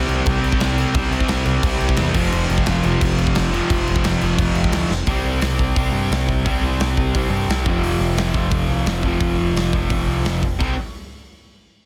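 Rowdy and upbeat, this short punk rock cut drives along at 174 BPM in a straight 4/4, tuned slightly below standard pitch. Two bright, picked electric guitars, one an overdriven cranked stack and the other a compressed, distorted tone, play the riff across the whole clip over power chords moving between C5 and F5. A scooped, high-gain, double-tracked guitar sits in the background, thickening the riff until it drops out at 4.9 s, the same moment a drum fill marks the shift into the second section at 5.1 s. Underneath, a growling picked electric bass with a punchy, overdriven, amped character holds down the low end, while an up-front acoustic kit with a punchy kick, medium-tuned snare, hi-hat and bright crashes rings in a big room. The mix is dry, with little reverb, and the master is dense and heavily limited in a modern style.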